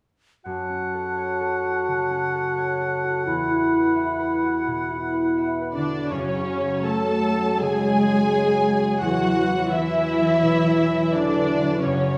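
Cinematic and bittersweet at a rubato 85 BPM in F# minor, this passage cut from a longer piece opens at 0.5 s with a ringing concert harp playing arpeggios alongside a clear, up-front oboe, a distant clarinet and a hollow, pure concert flute as second lines over F#m and Esus2. At 5.7 s the woodwinds give way to muted, con sordino strings, with a veiled, lush violin section carrying the melody, a second violin section in the background, a rich viola section as accompaniment and a dark cello section on bass. From 6.1 s a mellow, vintage-toned French horn section adds sustained chords, all set in a wet scoring stage reverb that gives the moving close its depth.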